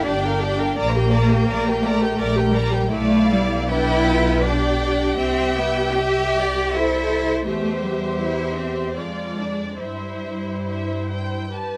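Classical music for string orchestra, this slow romantic movement in C major unfolds in 3/4 at 70-86 BPM with a warm, lyrical mood and a flexible rubato feel, tuned to A4 = 436 Hz. The first violins carry an expressive, lush melody with vibrato and gliding portamento, while a second violin section sings a smooth, even line beneath it. Violas fill out the accompaniment with a rich, close tone, cellos supply a bowed bass line until 11.5 seconds, and double basses join at 0.1 seconds to anchor the low end with light vibrato. The harmony drifts from G minor colours through a G7 chord before settling into C major and ending on a diminished turn back to C. Close, detailed microphones and light reverb capture the ensemble's bowing intimately in this excerpt from a longer piece.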